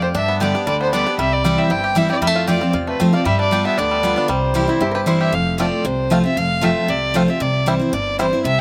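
Bluegrass in C major at a brisk 231 BPM in straight 4/4, this short, lively and rustic cut has a dry, outdoor sound with little reverb. A dark, woody fiddle with light vibrato sits up front carrying the melody, joined by a twangy, percussive banjo played with fingerpicks, both touched with slapback echo. Underneath, a bright, full-bodied picked dreadnought guitar drives the accompaniment, while a thumpy pizzicato upright bass anchors the low end. A mellow, nasal lap resonator guitar played with a slide slips in briefly from 4.6 to 5.3 seconds with a second line, its metallic tone also carrying slapback echo. The harmony moves through G, C, F and G7 before settling between F and C in the closing stretch.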